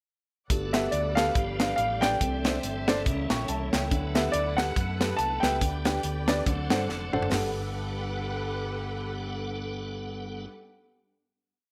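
A present baby grand piano carries a hook-based melody in this soulful, hopeful, swung uptempo gospel piece at 141 BPM in G major, over a tight, dry funk kit driving a two-beat praise groove, a round, punchy fingered electric bass walking and running with slides and chromatic approach notes, woody off-beat upright piano chords with short fills, a piping tonewheel organ pad with key click and fast rotary speaker, and a lush bowed string section, all set in a large studio reverb, until a drum fill at 6.9 s leads into a held final chord at 7.3 s.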